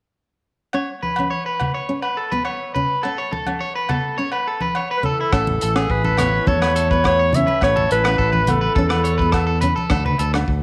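This carefree highlife guitar band excerpt opens at 0.7 seconds with a fingerpicked nylon-string guitar, bright and classical, alongside a twangy, slightly broken-up electric guitar playing picked arpeggios up front with a slapback echo. Ringing agogo bells sit in the background while congas with a thick-skinned, medium-tuned sound and hard hands join at 1.0 seconds. At 5.0 seconds a clarinet takes the melody, present and full of jazz-style vibrato, with a smooth-topped trombone carrying a second line behind it. The second section arrives at 5.3 seconds as a bright, direct fingered electric bass comes in up front and a distant, roomy soul drum kit adds hi-hat, a tight kick and rim clicks. A moderate plate reverb gives the warm, straight 4/4 groove a gentle halo, and a chord shift to D5 near 9.9 seconds colours the final moments of this snippet, which is cut from a longer piece.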